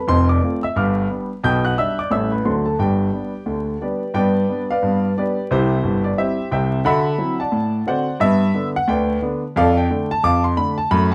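A clear, intimate grand piano plays solo stride jazz in G major at a swinging 177 BPM, playful and up front, its action noise audible and its long sustain ringing into a moderate club reverb, while a dark production with vinyl crackle frames this 11.1-second excerpt cut from a longer piece.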